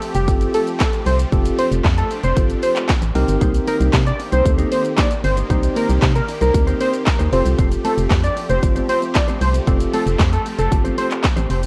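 A house drum kit with a punchy kick, cracking snare, handclaps, hi-hat and shaker drives this summery, euphoric dance-pop excerpt, where a hollow, organ-like FM bass sits up front, a thick, detuned unison lead with vibrato and digital delay carries the melody, a clean tine electric piano and huge supersaw chords in the background pump with sidechain, and a dark, fingered electric guitar with lush chorus joins at 3.4 s, all colored by a worn, warbling cassette-tape pitch drift.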